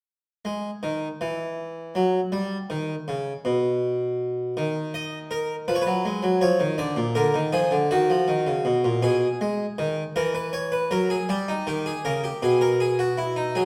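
A lone harpsichord carries this solemn, serious baroque-style two-part invention, entering at 0.5 seconds and playing through to 13.7 seconds. Its tone is plucked and full, in the manner of a Flemish instrument with two sets of strings, close-miked and up front, ranging from A#2 up to D#5. The piece moves in a stately 6/8 at 53 beats per minute counted in dotted quarters, with a straight feel in G# minor. After an unharmonized opening, the harmony settles through F half-diminished and A#7 to D# minor, then turns through G# minor over B, A# half-diminished over E and D#7 before coming to rest again on G# minor over B. The instrument itself sounds dry at close range, while a recital hall's reverb adds a lingering bloom around it. This short cut is lifted from a longer piece.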